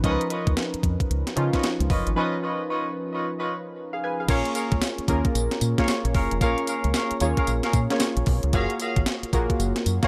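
Detuned sawtooth analog keys with chorus sit up front in this bouncy, slick new jack swing at 113 BPM with a swung sixteenth feel, backed by an overdriven 12-bit drum machine playing a thumpy kick, snare, hi-hat, crash and tambourine, a dark, round fingered dub bass, and distant, roomy jazz-style horn stabs trailed by tape echo, all in a dry mix, with a break arriving at 2.2 seconds before the harmony moves from Db9 to Bbm7 at 4.3 seconds and to Gbmaj9 at 8.5 seconds.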